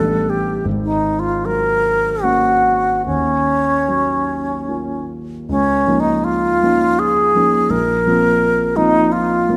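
Dreamy and luminous, this impressionist classical duo drifts in a rubato 3/4 at 70-89 BPM in Db major, with an airy alto flute carrying a tongued, vibrato-laced melody with lifted highs up front over a dark, mellow grand piano accompaniment rich in deep bass, both set in a moderate scoring-stage reverb, as suspended and ninth chords give way at 5.5 s to a new section opening on Db69 in this short cut from a longer piece.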